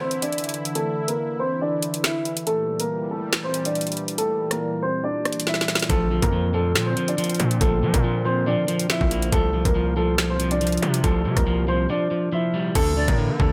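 A half-time drill groove at 140 BPM in 4/4 drives this menacing, ominous hip hop excerpt in D minor, its electronic kit punching up front with a knocking kick, woody snare, metallic hi-hats, rim clicks, finger snaps and crash cymbal. A dark, boxy grand piano carries the melody from the start, filtered and mellow, over a sweeping resonant pad of detuned sawtooth and ring-modulated tones whose slow attack and long release hold sustained chords beneath it. The opening stretch is a break with a filter sweep until a drum fill around 5.5 seconds leads into the full arrangement at 5.9 seconds. There a distorted, saturated 808-style bass hits hard with a fast attack and decaying tail, while an electric guitar at the edge of break-up adds fingered, filtered accompaniment. The harmony moves from Dsus2 through Gmadd9, Bbadd9 and C7sus4 before returning to Dsus2, with a brief breathy flute note echoing through digital delay near 13.0 seconds, all set in light digital ambience.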